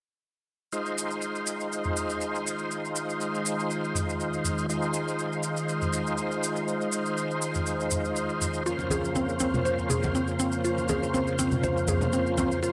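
The overdriven tonewheel organ stands out most, sitting up front with gritty, thick stabs colored by key click, chorus vibrato, a slow rotary speaker and tape echo. This short afro house excerpt in F minor moves at 121 BPM in 4/4 with a light swing on the 16ths, and its mood is hypnotic. Beneath the organ, a smooth, warbling analog pad holds sustained chords with a slow attack and chorus, while grainy maracas keep the groove going from the start and layered electronic toms, tape-softened and re-recorded in a large room, join at 1.9 seconds. The harmony rests on Fm7 until 8.7 seconds, when it shifts to Bbmadd9 over F and a woody, round synth pluck enters with decaying mallet-like arpeggios through chorus and tape echo. Ringing congas join in the background at 8.8 seconds, and a moderate, lush hall reverb surrounds the whole mix.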